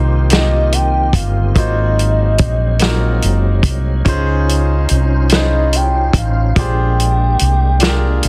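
Slow six-eight R&B with an intimate, sensual mood, cut from a longer piece and moving through rich extended chords. A woody, round fretless electric bass anchors the groove up front alongside a tight, mid-forward soul drum kit that enters at 0.3 s, while a brilliant concert grand piano accompanies and a lightly overdriven tonewheel organ holds sustained chords in the background with key click, chorus vibrato and slow rotary speaker. Also from 0.3 s, a soft, octave-layered synth lead with a sub octave carries the melody through chorus and tremolo, the whole mix sitting in studio reverb within a dense, heavily limited modern master.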